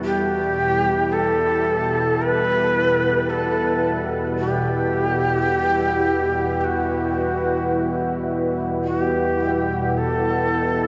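A nasal, organ-like drone fades in beneath a deep, warbling pad and a bright, bubbling filter texture in the background, while an up-front shakuhachi, breathy and unsteady with vibrato and chiff, carries a distant melody through delay, the whole excerpt bathed in a huge, wet reverb that gives this dark ambient drone its ominous mood.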